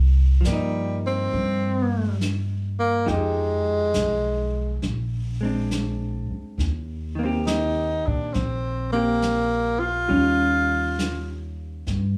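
A swung 4/4 at 68 BPM carries this melancholic, smoky jazz ballad excerpt, with woody, thumpy pizzicato upright bass on gut strings starting alone at 0.0 seconds before brushes on the snare and hi-hat and a dark, clean, picked hollow-body electric guitar join at 0.4 seconds. From 0.5 seconds a breathy, close-miked tenor saxophone takes the solo melody up front, its clear tone marked by scooped notes. The harmony moves from Cm7 through Fm9 and Bb9 to settle on Eb6 and Eb9, all in a natural studio room with light reverb.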